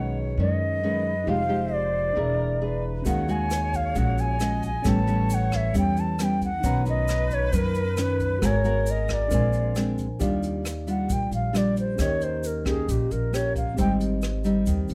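An airy bamboo bansuri with vibrato leads this romantic, sunny bossa nova excerpt at 134 BPM, backed by a breathy, crisp-edged small flute group until 10.0 s, woody fingerpicked nylon-string guitar on old strings, a worn, slightly out-of-tune tine electric piano in the background, and a dark, thumpy gut-string upright bass up front, while a brushed drum kit with a boomy kick and a grainy egg shaker enter at 3.1 s, and the bansuri takes a solo from 10.2 s as the music settles into Eb major.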